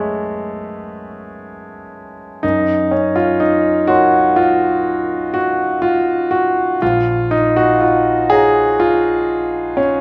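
Luminous and dreamy, this is a short excerpt of impressionist solo classical piano, cut from a longer piece. It moves slowly at 41 beats per minute in dotted quarters, in 9/8 with a free, rubato feel. A concert grand carries everything alone, sounding intimate and polished, with deep bass, long sustain and an audible action noise that keeps the instrument close and up front. Its span reaches from Bb1 up to C#6, and the harmony drifts through Amaj7/Gb, then Gbmaj7#11 at 2.4 seconds, settling on Bbm at 6.8 seconds. A wet recital hall reverb with a 1.5-second decay surrounds the piano, adding a soft glow to its warm, present tone.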